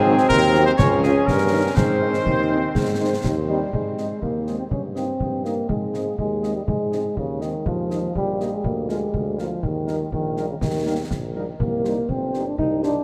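A festive, proud military-style march for wind band, cut from a longer piece, in which a dark trumpet section with light vibrato carries the melody over a warm, up-front euphonium second line, very quiet French horn accompaniment, clear tuba bass, background trombone chords that stop at 3.5 seconds, and a close, dry concert snare drum, bass drum and clash cymbals, all set in a vast, echoing cathedral reverb.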